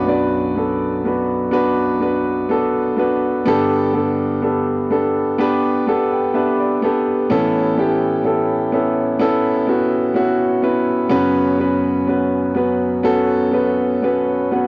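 A dark, mellow baby grand piano plays alone and up front throughout this short pop passage in B minor at a slow 63 BPM, its long sustain carrying a heartbroken, longing mood over chords moving from Bm through Gadd9 and Aadd9 to F#sus4. Brief piano fills arrive at 5.4 seconds and again at 13.5 seconds, and the instrument is tuned slightly low to A4 = 439 Hz. Cassette tape coloring and analog delay give the piano a vintage haze, set in a modest booth ambience with the intimate character of a home cassette recording.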